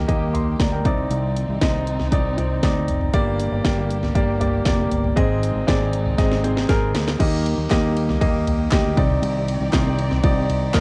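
A punchy, layered electronic house drum kit sits up front, its cracking snare and tape-warm tone sounding re-recorded in a large room, and it breaks into a drum fill at 6.2 seconds. This short piano-driven pop passage in Eb major moves at 118 BPM in a straight 4/4 with an anthemic, hopeful mood. A clear, polished baby grand piano carries the accompaniment up close over a direct, amped fingered electric bass, while a warm studio string section holds sustained chords in the background with vibrato, portamento and a smooth, expressive top. The harmony cycles through Eb, Cmadd9, Gm and Ab before returning to Eb as a new section begins. A very quiet, hollow group handclap from a small room joins at 7.7 seconds, and the whole cut carries a light reverb and the homespun character of a cassette recording.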